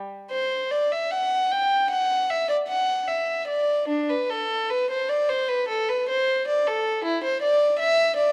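Classical baroque-style suite movement for solo violin, flowing and radiant at a rubato 70-80 BPM in 4/4, where a single bowed violin in period style plays up front from 0.3 to 8.3 seconds with a close, reedy gut-string tone, set in a moderate recital hall reverb with a dark production in this brief cut from a longer piece.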